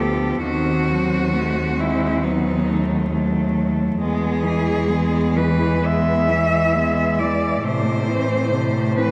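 A vast, echoing cathedral reverb surrounds this recording, with a vinyl crackle beneath it. It is a solemn, elegiac classical passage for a cello ensemble, cut from a longer piece and moving at a rubato 67 BPM in 4/4. Four bowed cellos, each a single player with vibrato, sound together throughout. A rich, focused cello carries the lyrical melody in its upper register, while a clear cello shapes a second line beneath it. A smooth, even, distant cello supplies the accompaniment, and an up-front cello anchors the bass. The harmony moves from D#dim7 at 0.4 seconds to E at 4.0 seconds and settles on A minor at 7.6 seconds.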